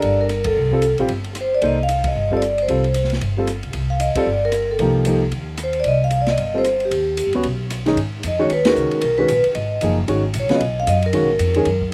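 Swinging at a brisk 227 BPM in 4/4, this cool, intense modal jazz fragment sets a ringing, metallic vibraphone melody with slow motor vibrato over an intimate concert grand piano with audible action noise and slapback echo, a woody pizzicato upright bass, and a dark, smooth drum kit of hi-hat, boomy kick, ride, rim click and snare, with band accents at 0.4, 2.0, 4.1 and 8.6 seconds as the music shifts from C dorian to G# dorian at 8.0 seconds in a dry, outdoor sound.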